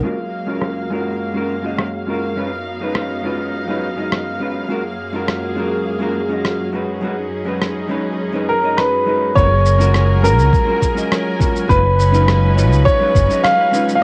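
A dark, clean hollow-body jazz guitar with tape echo and distant, biting bowed strings holding sustained chords under cassette-tape grain open this smooth sunset chillout piece, and at 0.6 seconds a straight 4/4 groove of gritty, sampler-style rim click and shaker enters, run through a filter sweep until 9.4 seconds. An intimate baby grand piano with audible action noise carries an up-front melody from 8.5 seconds. A round fretless bass and a thumpy kick drum join at 9.4 seconds and drop out at 13.3.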